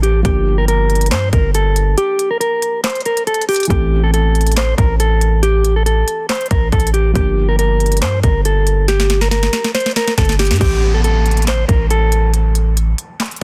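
A brief electronic downlifter opens this menacing hip hop cut, as a trap drum kit, a hard-hitting 808-style bass, a clean electric guitar and a felt-muted upright piano come in together at a half-time 139 BPM. Up front, the electronic kit pairs a hard-clipped kick with a sharp snare, crisp hats, handclaps and crash cymbal, while the punchy sine 808 hits with a fast attack and a noise layer before decaying. The dark, fingered guitar carries the melody over Gm7 and Am chords, and the soft, thick-felt piano sits in the background with short, intimate notes. After a break and a drum fill, the piano drops out at 10.6 seconds, and the harmony falls away as the downlifter returns and the guitar stops at 12.3 seconds. The dry, dense, heavily limited master keeps the low end heavy and the drums hard-hitting.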